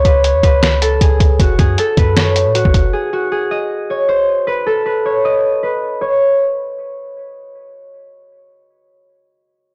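A blown-out, overdriven recording with light reverb and digital ambience frames this brooding, melancholic trap excerpt at 156 BPM in a half-time feel, moving from a C#5 tone to F#m. An up-front, ringing concert harp carries the fingerpicked melody through a low-pass filter and tape echo, while a deep, boomy 808-style bass with a clean sine tone and a muffled, pitched-down sampler kit of thumpy kick, fat snare, hi-hat and finger snaps support it. The bass and drums drop out by 2.9 seconds, and the harp plays alone until 7.9 seconds.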